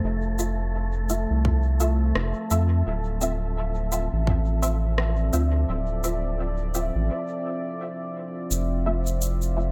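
Ambient dub with a deep, meditative mood, moving at an unhurried pace with a gentle swing, heard as a short section cut from a longer piece. A dark, mellow pad holds sustained chords from the start, its slow attack and chorus wrapped in built-in reverb, while a round analog bass sits up front with a deep, sustained tone. An airy, breathy wind-like noise texture drifts in the background until 7.1 seconds, where a brief break opens before the closing section at 8.5 seconds. Muted, nasal chord stabs with short plucked decays arrive just after the start, coloured by phaser, ensemble chorus, 12-bit sampler grit and dub echo. An electronic shaker and rim click, also sent through dub echo, join them, and a tight, up-front kick drum plays only between 1.4 and 4.4 seconds. The harmony moves from Fmaj7 to Dm9 and returns to Fmaj7, and the mix is echo-heavy with only light reverb.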